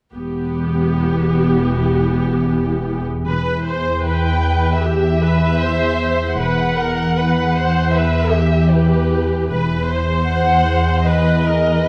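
From the first moment of this tense, ominous cinematic excerpt, the viola section plays rich and up front with light vibrato, a smooth, even accompaniment over an E minor chord at 77 BPM in 4/4. Beneath it, cello and double bass sections hold E in the background, both distant, the basses softly attacked and dropping out at 10.2 seconds. From 0.9 seconds an organ-like drone settles onto E, a calm, detuned sine sound that warbles with a vintage ensemble chorus and its own reverb, swelling in slowly and sustaining. At 4.0 seconds a dark violin section takes the melody, bowed with vibrato and portamento in an expressive chamber style. The E Hungarian minor colouring and a wet scoring-stage reverb give the ensemble a brooding, cavernous space.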